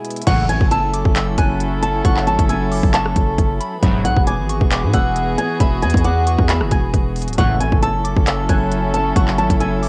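Hip hop and trap in F# minor at 135 BPM with a half-time feel, this eerie, hard-hitting excerpt from a longer piece sets a fingerpicked flamenco guitar melody, low-pass filtered and colored by cassette tape, against dark, reedy bowed chamber strings holding sustained chords with a gut-string, period-style tone. The guitar's acoustic character comes through in audible finger squeaks as it plays from the opening moment. An up-front electronic trap kit drives the track with a hard-clipped kick, crisp hi-hats, handclaps, rim clicks and crash cymbal, while a distorted, aggressive 808-style bass with a noise layer enters at 0.3 seconds and sits heavy underneath. Also from 0.3 seconds, a soft, pure FM synth bell adds a gentle, warbling second line in the background, treated with chorus and analog delay. A juicy, resonant polysynth with a filter sweep punctuates the chord changes with brief detuned stabs at 0.3, 3.8 and 7.4 seconds, moving from F#m7 to Eadd9 and back, all wrapped in digital ambience and the grain of a home cassette recording.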